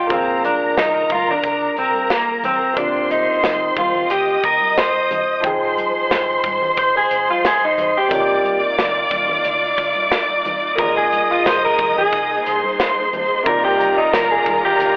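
Built on a gently swung 4/4 groove from a tight funk drum kit of hi-hat, kick and snare, this lush 1970s-style soul cut moves at an unhurried pace, bittersweet and smooth, a fragment lifted from a longer piece. An electric guitar through a small old amp carries the melody up front as a clean solo across the whole 15 seconds, its picked tone slightly broken-up and lo-fi, trailed by tape echo. Beside it, a symphonic violin section sings a bowed, vibrato-rich second line, even and silky on top, also touched by tape echo. A clear concert grand piano with a deep low end supplies the accompaniment, while a dark, round, foam-muted fingered bass and ringing, soft-handed congas sit far back in the mix, and a studio string section slips in beneath at 8.1 seconds with expressive sustained chords. The harmony circles through Cm11, Fm9 and Bb7sus4, and the whole take carries the character of a home cassette recording with a telephone-like sound and short booth ambience.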